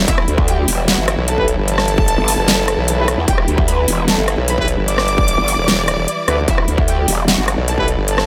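A half-time 4/4 pulse drives this heavy, aggressive wobble dubstep cut, with a distorted electronic kick and an up-front drum kit of huge snare, metallic hi-hats and rim clicks under a growling, saturated growl bass and a sawtooth formant-sweep wobble bass, both thickened with chorus and overdrive. An expressive, close violin section with tape echo carries the melody over dark, woody strings holding sustained chords with sidechain pumping, while bright brass stabs enter in the background at 1.4 seconds, set in light small-room reverb.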